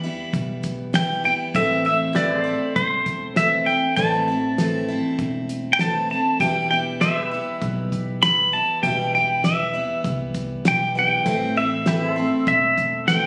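A twangy pedal steel, played up front with fingerpicks and slide, sings a brooding, heartbroken honky-tonk melody over a picked dreadnought acoustic guitar, a second pedal steel holding sustained chords with volume swells, a very quiet baby grand with audible action noise, and a woody, thumpy pizzicato upright bass on gut strings. At 0.3 seconds a cloth-damped drum kit joins with hi-hat, a fat snare and a tight kick, its dark, rolled-off sound keeping the straight classic-country groove smooth as the harmony moves between Em and Am. This short cut from a longer piece sounds as if captured on a phone in the room, wrapped in a moderate large studio reverb.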